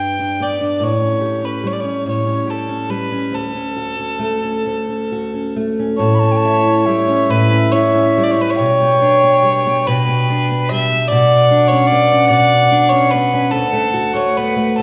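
An earthy, up-front fiddle sings a tender, pastoral Celtic slow air in A mixolydian over fingerpicked steel-string acoustic guitar with fresh strings and audible finger squeak, moving in a rubato 6/8 at roughly 44-51 BPM, before an airy, straight-toned wooden flute adds an expressive, tongued second line at 6.0 seconds, all bathed in a wet recital-hall reverb in this short passage cut from a longer piece.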